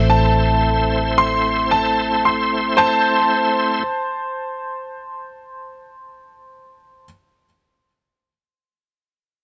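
Blues in A minor at a slow 37 BPM in 12/8, soulful and brooding, this fragment of a longer piece sets a bright, shouting tonewheel organ with slow rotary speaker, overdrive and chorus vibrato on sustained chords, a dark, foam-muted electric bass holding A1, and a worn, slightly out-of-tune tine electric piano in the background over a held Am chord, all three stopping near 3.8 seconds while a woody, intimate upright piano with audible action noise and digital delay carries a second line alone until 7.1 seconds, under light reverb.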